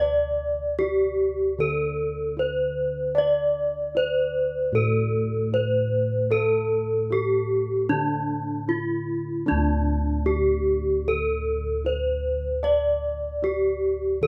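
Javanese gamelan in D slendro at a serene 76 BPM, where a dark, ringing bronze metallophone carries the melody up front with the shimmering beats of its paired tuning and the smooth tone of a horn mallet, while close-miked bossed gongs supply a round, bright, dry bass across the full 14.3 seconds, the live ensemble framed by a short studio ambience in this fragment cut from a longer piece.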